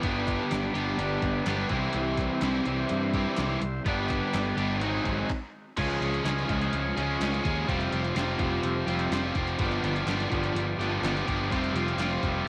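A straight 4/4 pulse at 126 BPM comes from a gated 80s digital drum machine with a thumpy kick, gated reverb snare, hi-hat, crash and handclaps, backed by crisp group handclaps sitting in the background, in this jangly, carefree indie rock clip cut from a longer piece. An up-front, bright semi-hollow guitar and a darker, compressed overdriven electric guitar with lush chorus and analog delay both play riffs over a growly, punchy fuzz bass, while a buzzy vintage combo organ holds very quiet sustained chords. The band halts briefly at 5.3 seconds before moving from the opening G-based progression into a section built on Dbmaj7, Fsus2 and G7, all carrying the hazy character of a home cassette recording.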